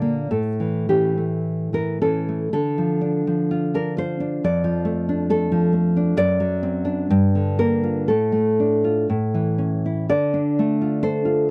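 A lone nylon-string guitar, fingerpicked and placed up front, carries this short excerpt from a longer romantic piece for solo classical guitar. The mood is melancholic and wistful, set in D minor at a slow 50-69 BPM in 2/4, with a rubato feel that lets the time breathe freely. The guitar's tone is dark and woody, with the dull character of old strings, and its part spans from F2 up to D5. After an opening on an A chord, a new section begins at 2.5 seconds on D minor, moving through Dm/F, D7/F#, Gm7 and Dm/A before returning through A to D minor at 10.1 seconds. The sound is that of a dry, close studio recording in a 1970s style, touched with light reverb and tuned slightly low to A4 = 438 Hz.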